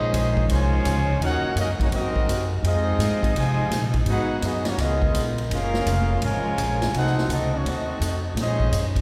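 Brassy and dramatic, this short cut from a longer big band swing piece moves at 168 BPM in Bb minor with a swung eighth-note feel. A clear, up-front trumpet section carries the melody, while a bright trombone section with vibrato plays a second line beneath it, both stopping at 8.8 seconds. The edgy saxophone section, close-miked with vibrato, holds very quiet sustained chords in the background. An upright bass, plucked, woody and thumpy, sits up front and anchors the low end, and a natural acoustic drum kit with a punchy kick, medium-tuned snare, hi-hat and ride cymbal enters at 0.1 seconds. The harmony turns through rich minor and extended chords, from Bbm11 through Db13 and Gbmaj9 to a tense F7b9 before settling back on Bbm11. A long concert hall reverb places the band further back in a big, resonant room.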